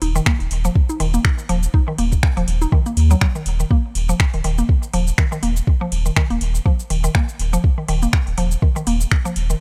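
Minimal techno with a hypnotic, cool mood, cut from a longer piece and built on a 4/4 pulse with a light swing on the sixteenths. A mallet-like synth pluck carries the riff throughout, its woody, nasal FM tone given a fast attack and short decay, then dressed in chorus, cassette-tape colour, delay and sidechain pumping. Beneath it a saturated sub bass sits thick and up front, its triangle-based tone sustained and pumping against the beat. A booming analog drum machine, overdriven and re-recorded in a small room, supplies finger snaps, metallic hi-hat, ride cymbal and shaker, while a soft, tape-warm electronic kick enters at 0.3 seconds and stays up front until 9.2 seconds. The mix is dry and close, with little reverb.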